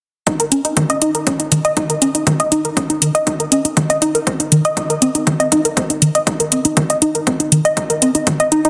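A tight, nasal synth arpeggio of detuned sawtooth and pulse waves enters together with the drums at the start of the excerpt, its plucky, fast-attack notes thickened by chorus, pumping against the beat and trailed by tape echo in an emotional, dreamy progressive house setting. Up front beside it, overdriven metallic hi-hats ring out, while a punchy, overdriven kick sits lower in the mix, both re-recorded in a large room, with the kick also high-pass filtered. A lush hall reverb surrounds the parts, and the master is dense and heavily limited, with the kick dropping out at 8.4 seconds as synth and hats carry on to 8.7 seconds.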